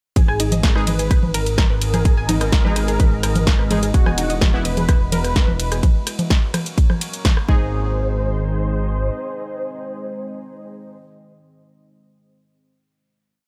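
A driving, dark melodic techno piece opens with a thick, wave-folded unison lead riff, a warbling lo-fi pluck arpeggio, a rumbling detuned saw bass, a punchy four-on-the-floor kick and a tape-warm analog drum machine of hats, rim, ride, conga and snare; the synths carry sidechain pumping, and brassy, evolving chord stabs echo in at 0.8 s, a deep, moody pad with gritty sampler texture joins at 1.4 s, and the drums stop near 7.6 s for a final hit led by lead, pad, stabs and bass.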